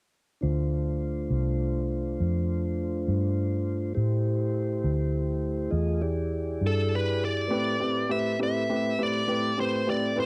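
Mournful and smoky, this home-recorded blues in 12/8, cut from a longer piece, opens with a mellow, flute-like tonewheel organ holding sustained chords through a slow rotary speaker over a dark, round, foam-muted fingered electric bass that drops out at 7.5 seconds, while a smooth, overdriven, picked lead guitar takes the melody from 6.7 seconds and a natural-sounding grand piano joins in accompaniment from 7.5 seconds, with cassette tape coloring the organ, guitar and piano in a dry, close sound.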